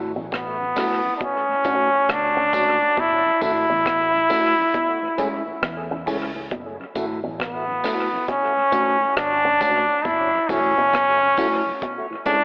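A telephone-filtered sound soaked in echo and a moderate chamber reverb frames this hypnotic, serious roots reggae excerpt, moving at 68 BPM in F# minor with a swung sixteenth feel. A brilliant, up-front trombone carries the melody from 0.3 seconds, its light vibrato trailing into dub echo. Beneath it, a dark, clean fingered guitar plays accompaniment through its own dub echo, while a bright, twangy envelope-filtered guitar picks arpeggios in the background. A mellow tonewheel organ, lightly overdriven with chorus vibrato, a slow rotary speaker and analog delay, sits low in the mix alongside a round, punchy, foam-muted bass that drops out at 11.3 seconds. The deep, dry drum kit keeps hi-hat, tight kick and rim click under analog delay, and a faint tambourine joins at 0.8 seconds as the chords cycle through F#m7, Dmaj7 and Amaj7.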